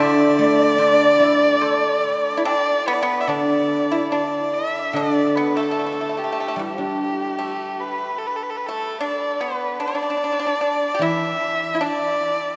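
This graceful, festive fragment of Chinese traditional chamber music moves in a free, rubato 4/4. A rich, nasal erhu carries the melody up front, its single bowed line colored by light vibrato, portamento and an airy, earthy tone. A breathy bamboo xiao adds a very quiet second line only in the opening 2.5 seconds, while a soft woodblock taps briefly between 0.8 and 2.7 seconds. Throughout, a dry, percussive pipa played with fingerpicks carries a second line of its own, and a ringing, silvery guzheng, also close and forward, supplies the accompaniment. The ensemble sits in a cathedral-like reverb with a long tail, as heard in a church or concert hall.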